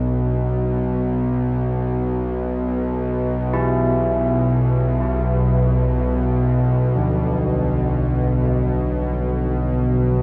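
A tense, detuned sawtooth drone sits up front from the first second, its string-like tone carrying vibrato and its own reverb, while bronze carillon bells fade in behind it, playing arpeggios with a ringing minor-third overtone and tape echo. This dark, ominous ambient fragment moves in free time in B minor over a Bmadd11 chord, and is cut from a longer piece. A cathedral reverb with a 6.4-second decay surrounds both parts, letting the sustained drone and the airy bells hang in a vast, shadowy space for the full 10.2 seconds.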